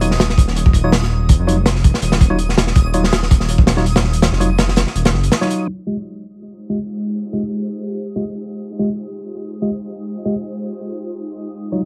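Drum and bass with a jungle edge, this nostalgic, raw passage from a longer piece moves at 164 BPM in F minor with a light swing on the sixteenths. A crunchy breakbeat kit sits up front with a tight kick, medium-tuned snare and hi-hat, saturated and gritty with a rolled-off top, while a dark detuned saw bass rumbles and beats underneath. Both drop away early, the kick falling out at 5.0 seconds and the drums stopping by 5.6 seconds. A worn, slightly out-of-tune tine electric piano plays stabs throughout through a combo amp, roughened by vintage 12-bit sampler grit and dub echo, and a filter sweep moves across it over the second half. A reversed, dreamy texture hovers high in the background the whole time, and from 6.4 seconds an ethereal, airy pad holds sustained chords shimmering with chorus and phaser. The harmony shifts from Ebm9 to Fm9 at 5.7 seconds, all set in a small room with vinyl crackle and a muffled low-pass tint.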